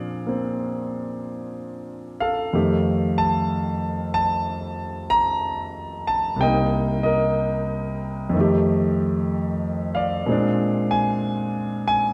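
A clear, up-front concert grand piano opens this playful, sophisticated solo jazz piece with a natural tone and deep bass, swinging through a slow 4/4 over chords moving from Bb9 to F9, Cm7, F9 again and back to Bb9, ringing in the moderate reverb of a concert hall for the 12.1 seconds cut from a longer performance.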